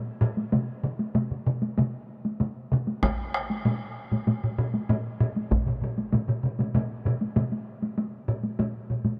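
The recording has a dark, warm sound with light reverb, and the drums sit up front. This short excerpt of Japanese traditional taiko drum ensemble music moves at 97 BPM in a straight 4/4, with a powerful, ceremonial mood. One taiko ensemble part, played with hard sticks in a small room, runs from 0.2 seconds to the end. It is joined by a solo taiko drum part struck with heavy sticks, whose sound is compressed and saturated. Two more taiko ensemble parts with heavy sticks fill out the group: one in a small room, and one close and dry that appears at 3.0 seconds and stops at 5.7 seconds. At 8.0 seconds the music moves into a new section that carries on until the cut.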